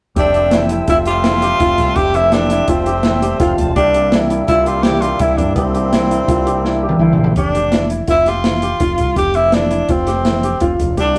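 Driving and bright, this excerpt of progressive instrumental band music in 5/4 sets an up-front, jazz-style tenor saxophone melody with vibrato and a soft attack over vintage, short-sustain grand piano arpeggios, a round, punchy fretless bass, an open jazz kit with a boomy kick, and a gritty, overdriven tonewheel organ with key click that adds fills before it stops at 7.3 seconds, captured in a rough rehearsal-room recording with moderate stone room reverb.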